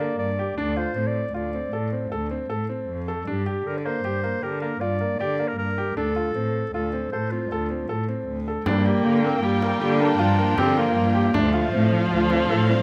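Pulsing in 7/4 at 156 BPM with a straight feel, this urgent, hypnotic contemporary chamber piece in G minor opens with a classical-style solo clarinet melody over clear, intimate grand piano arpeggios with audible action noise and a dark, veiled con sordino cello bass, all cycling between G minor and D minor seventh chords. At 8.6 seconds a distant, lush studio string section adds smooth sustained chords, joined at 8.7 seconds by an expressive bowed viola second line with vibrato and portamento and by a frame drum played with hard hands in the background, which stops at 12.5 seconds. Close, detailed microphones and light reverb frame this short cut from a longer work.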